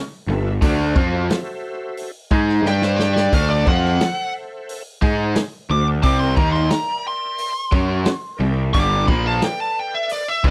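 A bright, double-tracked garage guitar riff drives this swaggering, driving blues rock and southern rock piece at 89 BPM, joined by a growly fuzz bass, a punchy vintage drum kit with a fill at 2.6 seconds, a dark, smooth overdriven lead guitar melody entering at 2.7 seconds, and a gritty tonewheel organ holding chords through a slow rotary speaker in the background, captured in a dry, close 1970s-style studio sound.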